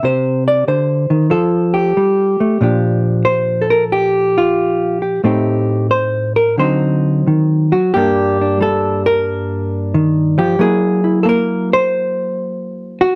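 Solo jazz guitar in a warm, playful mood, swinging its eighths at 91 BPM with a rubato feel, as a clean, dark hollow-body electric plays alone and up front, fingered and compressed, over a moderate studio reverb. The harmony moves from Cm through F to Bb6 in Bb major, then passes Am7b5 and D7b9 into G minor at 7.9 s, touching F#7 at 10.6 s. This short excerpt is cut from a longer piece.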